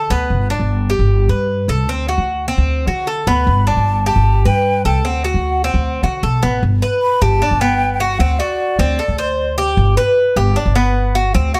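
A light reverb gives this short, relaxed Latin cut a gentle sense of space, with the Cuban tres and upright bass sitting up front. At 152 BPM in a straight 4/4 feel in G major, the tres picks arpeggios on its metallic double strings, some doubled at the octave, over a harmony that alternates Gadd9 and D7 before settling on G at 9.8 seconds. Beneath it, the pizzicato upright bass has a woody, growly, thumpy tone on steel strings, holding down the low end throughout. After a brief touch at the very start, the close-miked silver concert flute carries the melody from 3.3 to 9.6 seconds, airy and hollow with a soft attack and gentle vibrato. The overall mood is warm and relaxed, as if lifted from a longer piece.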